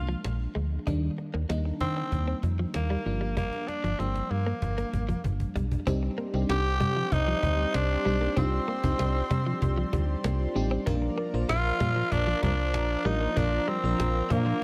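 A raspy, gritty tenor saxophone with vibrato and scooped notes carries the melody up front in this urgent, moody 1980s-style pop excerpt in C minor at 96 BPM, over a snappy slap-like FM bass with a metallic attack and a lush, dreamy FM electric piano layered with a soft pad and treated with chorus and phaser. A hard-handed, close cajon drives the groove and plays a fill at 3.4 seconds, while a clean, direct-recorded electric guitar picks a compressed riff in the background through subtle chorus and digital delay. A shimmering pulse-width pad enters with sustained chords at 5.9 seconds, and mellow, round synth brass stabs join a band accent at 13.4 seconds, all set in light digital reverb.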